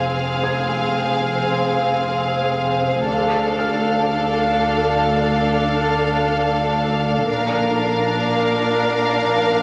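A wet recital-hall reverb surrounds this brief, mysterious and ominous excerpt of suspense film score in free time, where a clear, pure violin section holds a high floating melody above a second violin section with a smooth top, a warm viola section and a glassy, ethereal FM pad with ensemble chorus and its own reverb, all bowed sul tasto or sustained. A close, intimate cello section and a close double bass section anchor the bass with soft attacks and light vibrato in the cellos, as the harmony moves from Fm to Dm and finally to Bb. From 0.4 to 7.3 seconds a very quiet, dark, worn grand piano adds high mellow texture, its action noise audible.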